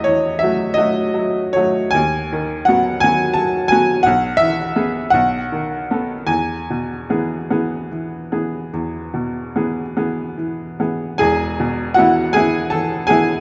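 A bright upright piano opens alone on an F#m7 chord over an E in the bass, setting a serene, dreamy romantic nocturne in E major. Played with rubato in 12/8 at roughly 48-59 BPM counted in dotted quarters, the solo moves through B/D#, E/B and B7 before arriving on E at 6.3 s. The instrument sounds woody and slightly detuned, tuned to A4 = 437 Hz, with a natural tone, short sustain and a close, up-front presence across a range from E1 to A5. Moderate scoring-stage reverb with a 1.7-second tail surrounds it, and the overall production is dark and warm. At 11.2 s the music moves into a new section, and this fragment, cut from a longer piece, ends at 13.4 s.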